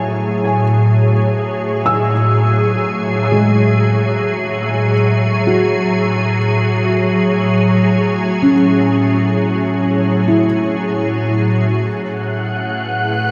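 Ambient music in free time and A major, this serene passage is cut from a longer piece and opens on an Amaj7 chord over its 13.3 seconds. A soft, organ-like pad sustains the chords from the opening, its pure, detuned tone sitting bright and up front with ensemble chorus, slow attacks and long releases bathed in shimmer reverb. Alongside it, a felt-muted upright piano plays arpeggios in a mellow, dark, intimate voice, its thick felt and audible action noise giving it a vintage character while a diffuse ambient delay and shimmer reverb trail behind. At 12.2 seconds a breathy, wind-like tuned noise texture enters high in the register, airy and up front with its own reverb and shimmer. The whole recording sits in a wet cathedral space with a reverb time of 6.3 seconds, and the arrangement moves into a new section at 11.9 seconds.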